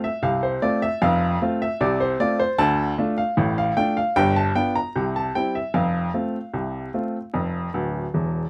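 A close, dry recording with the feel of a 1970s studio session, a booth's moderate ambience and a bed of vinyl crackle sets an intimate scene for this short cut from a longer ragtime piano piece. A bright upright piano plays alone throughout, sitting up front with a woody, brilliant tone, short sustain and audible action noise that keeps the instrument's mechanics in earshot. The mood is lively and playful, moving at 76 BPM in 2/4 with a straight feel in F major, and the piano spans from deep bass notes at D1 up to Bb5. The harmony travels from F through Dm, G7 and C before landing back on F around 5.7 seconds. Near the close, from 7.7 seconds, the piano adds a brief fill that rounds off this polished, present passage.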